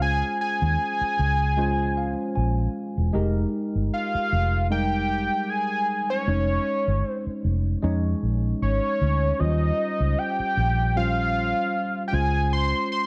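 A fat, detuned sawtooth lead with sub-octave weight, vibrato and slapback echo sings the melody up front over a worn, slightly out-of-tune tine electric piano with analog chorus, which adds a fill from 1.6 to 3.1 seconds, and a dark, round, foam-muted fingered bass that drops out at 12.7 seconds, in this silky, smooth 1970s-style soul excerpt at 77 BPM with a gentle 16th-note swing, moving from Dbmaj7 through Fm11 and Eb13 back to Dbmaj7 under light reverb.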